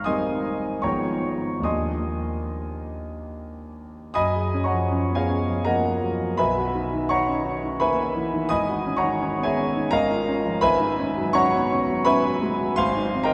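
A solo concert grand piano opens on a lush Abmaj9 chord, then slips through Abm6 to settle on Ebmaj9 in this hazy, dreamy impressionist classical fragment. The piece sits in Eb major and 3/4 time, drifting with a rubato feel at roughly 70-86 BPM. At 4.2 seconds the harmony shifts into a new passage built on F#maj9, Bmaj7 and G#m11, then colors the chords over a G# bass before returning to Abmaj9 at 12.8 seconds. The piano's tone is clear and up front, with an open character and deep bass, ranging from Ab1 to F6. A wet church reverb with a long 2.9-second decay, layered with a small room reverb, wraps the instrument in a spacious haze.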